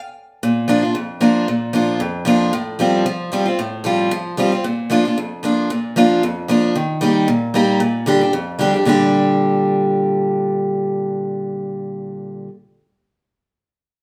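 Bluegrass in Bb major, this short excerpt from a longer piece has a rustic, joyful mood and races along at 227 BPM in 4/4 with a light swing on the eighth notes. A lone picked steel-string acoustic guitar carries everything from 0.4 to 12.5 seconds, ranging from F2 up to G4. Its tone is bright and boxy, with the fresh-string sparkle and compact body of a parlour guitar, and the occasional finger squeak adds a touch of close-up detail. The guitar sits up front in the mix, yet the room sounds as if heard from further back, with a wet studio reverb lending a soft halo to each note. The harmony moves from Bb through Fadd9/A and back to Bb, then shifts to Eb before settling on Bb6, and a brief new section arrives at 8.9 seconds.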